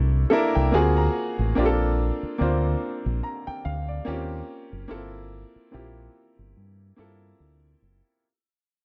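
At 72 BPM in 4/4 with a gentle swing on the sixteenths, this smooth, late-night R&B fragment in G dorian fades out across its full 8.2 seconds, moving through rich chords such as C13, Bbmaj13 and Gm11. A clear, woody upright piano with a smooth, vintage tone opens with a fill over the first 1.6 seconds and then carries the accompaniment, while a deep, round, punchy fingered electric bass sits dark and amped beneath it until 8.0 seconds. Both parts sound up front in a dry, close 1970s-style studio recording.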